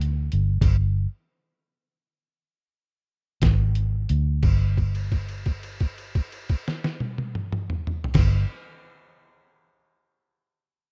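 A dark, round, foam-muted electric bass sits up front in this gritty, laid-back slow blues fragment in 12/8 at 58-68 BPM, moving between G1 and D2 before settling into a held note from 4.4 s to 8.2 s. Beside it, a lo-fi sampler-style drum kit, compressed, pitched down, muffled and overdriven, brings a thumpy kick, a fat snare, hi-hat, toms and crash cymbal. The pulse slows through the opening 4.4 seconds, with a stop from 0.6 s to 3.4 s, all in a rough home-demo mix with little reverb.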